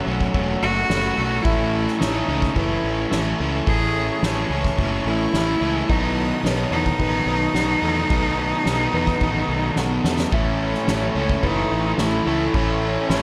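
A steady 4/4 pulse at 108 BPM with a straight feel drives this euphoric, hopeful post-rock excerpt in A lydian, moving through F#m7, Amaj7 and B7 before settling back on Amaj7 at 10.3 seconds. A bowed cello carries the melody with a rich, focused tone and vibrato, its line touched by slapback echo and analog delay. Beneath it, a soft-mallet drum kit with a fat snare and punchy kick sits distant and roomy, joined by a fuzz-toned fingered bass, while an overdriven semi-hollow guitar plays a riff in the background. A felt-muted upright piano adds dark, intimate arpeggios with audible action noise and the same echo and delay, a very quiet twelve-string electric guitar picks clean arpeggios, and a detuned sawtooth pad with chorus holds soft, sustained chords. After a drum fill, a dark, compressed overdriven electric guitar enters with its own riff at 10.3 seconds, and the whole mix sits in a big arena sound with moderate scoring-stage reverb.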